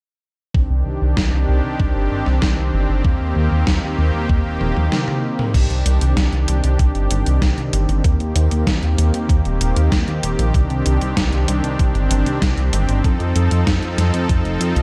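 Moody and nocturnal, this synthwave excerpt moves at 96 BPM in C dorian, with a soft, smooth, detuned supersaw holding sustained chords that cycle between Cmadd9 and Eb6 before closing on F7, its sound pumping under sidechain and trailed by shimmer reverb. Beneath it, an up-front chorused synth bass with a glossy, nasal, dark edge also pumps, carrying a filter sweep through the first 5.5 seconds. A thumpy electronic kick and a gated 80s digital drum machine, with crash, hi-hat, gated-reverb snare and toms, sit in a large room, and a drum fill at 4.6 seconds leads into the second section.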